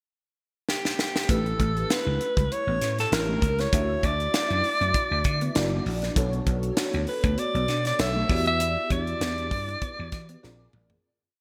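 A drum fill with gated reverb and a punchy, bright alto saxophone open this bittersweet, urban 1980s jazz-funk pop piece at 98 BPM, then from 1.3 seconds a growly slap bass, a lush chorused FM electric piano with a soft pad layer playing rootless chords, and a very quiet muted guitar line join the crisp sixteenth-note groove beneath the sax's motif-based jazz melody, all in a glossy digital production that fades out from 8.6 seconds.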